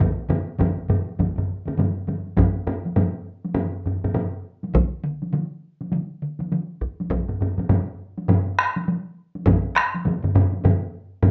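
A rough home demo mix, set in a wet studio reverb, frames this short cut from a longer Japanese traditional piece for taiko drum ensemble, and the mood is ceremonial and powerful. Four taiko parts, all played with hard sticks, move at 102 BPM in 4/4 with a 60% swing on the sixteenths. Two of them sound out in a live room, one of them sitting up front, while a third is miked close yet stays in the background. The fourth, close and dry, joins at 0.3 seconds and also sits up front. The opening passage gives way to a new section at 2.4 seconds, and the background drum drops away at 9.6 seconds while the others carry on to the end.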